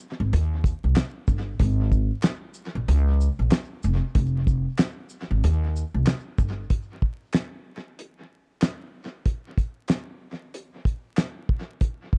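A dry, close-sounding mix with little reverb, heavy echo and a bed of vinyl crackle opens this nostalgic, soulful boom-bap hip-hop excerpt at 94 BPM in 4/4, with a 59% swing on the sixteenths. Up front, a pizzicato upright bass with steel strings and a woody tone plays between F1 and Eb2, entering at 0.2 seconds and stopping at 6.6 seconds. A cloth-damped, thuddy acoustic drum kit comes in at 0.3 seconds and carries on to 12.2 seconds, its dark, smooth sound and rolled-off top giving a fat snare and a tight kick beside hi-hat, shaker and handclaps. The drums are treated with dub echo, which lends the dry kit a trailing, spacious character. After the bass drops out, the second half rests on the drums alone, letting their muffled punch and the crackle define the mood.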